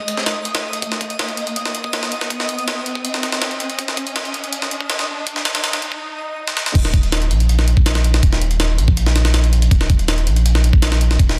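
Gritty, pitched-up sampler-style jungle drums with a thumpy kick and high-tuned snare, compressed and re-recorded in a large room, drive this atmospheric, nostalgic drum and bass cut at 162 BPM, where an electronic riser and swell build alongside a bright, twinkling granular FM texture with octave-up shimmer and built-in reverb in the background, then a stop at 6.0 seconds gives way at 6.8 seconds to a deep, round, tube-saturated dub sub bass landing up front on the drop.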